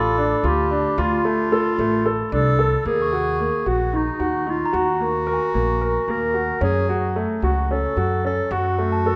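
A warm, smooth-topped clarinet carries the melody up front in a classical solo style, over clear grand piano arpeggios and a dark, woody pizzicato upright bass, while a soft, bell-like glockenspiel played with rubber mallets rings mellowly in the background. This restless, urgent piece of contemporary chamber music moves in a straight 7/8 at 223 BPM in eighths, its harmony shifting from D minor to E-flat minor at 2.9 seconds and to G-flat minor at 6.6 seconds. A moderate concert hall reverb surrounds this brief portion cut from a longer work.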